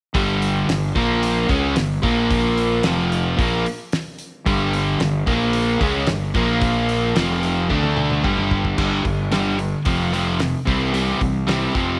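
A small, lightly reverberant room frames this driving, sunny classic rock excerpt, where a biting overdriven guitar and an up-front semi-hollow guitar bathed in spring reverb play riffs through G5, Bb5 and F5 chords over a punchy fingered bass with fuzz and a damped 70s drum kit with a fat snare and dark cymbals, whose fill at 7.7 seconds leads into a new section at 8.8 seconds.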